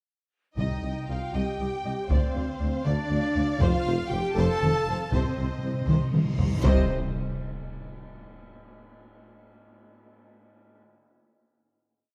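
A dark, reverberant scoring-stage sound frames this brief, epic cinematic orchestral piece in C dorian at 79 BPM in 6/8, where a lush violin section sings the theme with portamento over a second violin line's driving ostinato, an airy flute group doubling the tune at the octave, very quiet woody violas, clear French horns, a punchy tuba, cellos and double basses underpinning the bass, and hard-stick taiko strokes with timpani, before a timpani fill from 5.1 s and a huge reverse cymbal at 6.4 s lead into a low impact on the final chord at 6.6 s.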